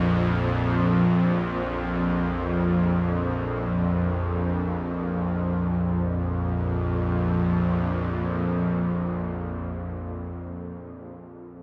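This ambient excerpt, cut from a longer piece, feels ominous and dark. A single bowed-like drone plays alone from 0.0 to 10.3 s, sitting low between Bb1 and F2 and resting on one Bb5 chord. Its tone is string-like yet nasal and sawtooth-edged, with unison layering, a noise layer, vibrato and a bright, tense quality that keeps it up front. The sound blooms through a slow attack, sustains, then trails off on a long release into its own built-in reverb. A huge, wet ambient space with an 8.2-second decay surrounds it, and the music shifts into a new section at 5.8 s.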